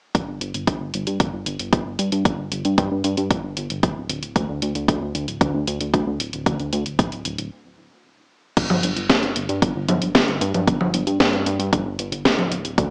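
Bittersweet and melodramatic, this italo disco excerpt moves in a straight 4/4 and is cut from a longer piece. A glossy, retro chorused synth bass anchors the low end, blending pulse-wave, sawtooth and sine tones with pulse-width modulation, a filter sweep, a fast attack, sustained notes and a mellow edge roughened by tube saturation. A punchy electronic kick drum sits up front beside a house drum kit of congas, crash cymbal, hi-hat and a cracking snare, the kit bathed in gated reverb. Both drum parts sound layered and tape-warm, re-recorded in a large room. The whole band stops from 7.5 to 8.6 seconds, then a new section begins and runs to the end. Light reverb and a small-speaker character colour the overall mix.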